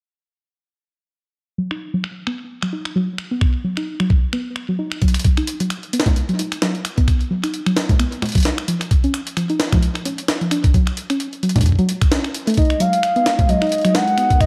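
A soft, round pluck opens this eerie, cerebral IDM excerpt at 131 BPM with swung 16ths, its dark chorused arpeggios carrying tape echo and a filter sweep, joined at once by a gritty, pitched-up jungle sampler kit of congas, finger snaps, muffled hi-hat and a medium-tuned snare, then a thumpy, up-front electronic kick from 3.4 seconds, before a warbling, nostalgic lead with vibrato enters at 12.6 seconds over an Abm9 chord and a glassy, ethereal FM pad drifts in behind it.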